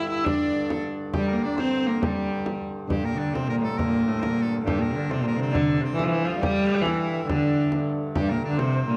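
Close, detailed microphones set in a moderate recital hall reverb capture this ancient, driving medieval dance, cut from a longer piece, in G dorian at 137 BPM in 6/8. A clear, pure viola da gamba carries the melody up front with light vibrato, a soft attack and slapback echo, while an edgy shawm with a smooth top and a bright, shimmering hammered dulcimer play second lines. A dark, nasal hurdy-gurdy holds a reedy drone in the background, and a deep, dry frame drum played with soft hands sounds from 0.3 to 8.7 seconds.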